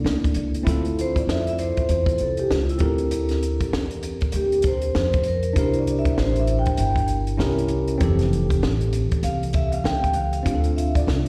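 Over a swung sixteenth-note groove in 4/4, this mellow, nocturnal jazz-hop fragment is cut from a longer hip hop piece. A compact cocktail drum kit comes in at 0.1 seconds, dry and up front, with a punchy kick and a high-tuned snare beside the hi-hat. The pizzicato upright bass sits just as close, woody, growly and thumpy on steel strings. A clean tine electric piano plays accompaniment through its built-in speakers with a slapback echo, moving through chords such as Dm9, Gm11/D, C7b9 and Fmaj9. From 0.7 seconds the soft-mallet vibraphone takes a solo, metallic and ringing with a slow motor vibrato and an airy, mellow tone, also carrying slapback echo. The whole performance sounds like a live gig heard through the venue's PA, with recital hall reverb around it.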